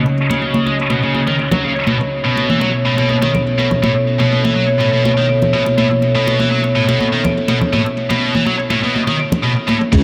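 Breakbeat at 123 BPM, raw and gritty, cut from a longer piece, where a dark, wave-folded analog pad holds sustained chords from C#sus4 to B9sus4 with chorus and sidechain pumping. Bright, hard-handed congas with tape echo play alongside a scooped, double-tracked high-gain guitar riff, distorted and low-pass filtered, which sits up front in an echo-heavy mix with moderate spring reverb. Only at 9.9 s do a deep, rumbling detuned saw bass and a dusty, thumpy soul sampler-style drum kit with crash and ride cymbals land.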